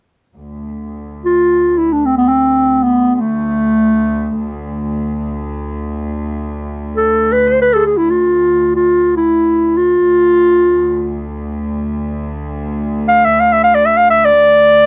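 Soulful and longing, this excerpt from a longer Turkish makam ensemble piece unfolds in free time in D makam nikriz, with a warm chamber cello section holding a low bowed D2 drone of gut-string tone from 0.4 seconds while a mellow, smooth-topped solo clarinet enters at 1.2 seconds and sings the melody up front between A3 and F5, all in a dry sound marked by the warbling pitch drift of worn old cassette tape.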